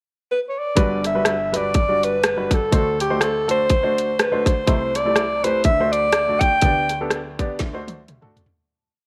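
A driving two-beat praise groove at 123 BPM, swung in 4/4, kicks in at 0.8 seconds on an electronic, layered drum kit with a tight kick, woody snare, bright hats, rim clicks and toms. Up front, a warm alto saxophone opens alone with the pickup and plays a soulful, motif-based solo melody of call phrases in G major, with light vibrato and scooped notes in a jazz style. A clear, worn grand piano with short sustain comps rhythmic drop2 chords, all bathed in a moderate echo chamber reverb, as this jubilant, uptempo gospel piece fades out from 6.6 seconds and ends on a drum fill at 7.6 seconds.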